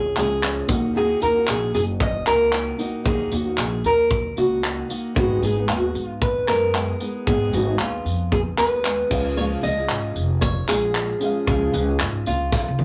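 A bright, up-front flamenco guitar carries the melody from the opening moment, over a woody pizzicato upright bass, a full-bodied fingerpicked steel-string guitar and a mellow, felt-muted upright piano tucked deep in the background. A punchy studio drum kit joins at 0.2 s with snare, kick, handclaps, tambourine and crash, giving this easy-going, carefree acoustic pop excerpt a gentle swing. A drum fill closes the cut at 12.5 s, all heard in a rough rehearsal-room sound with saturation and a short, wet small-room reverb.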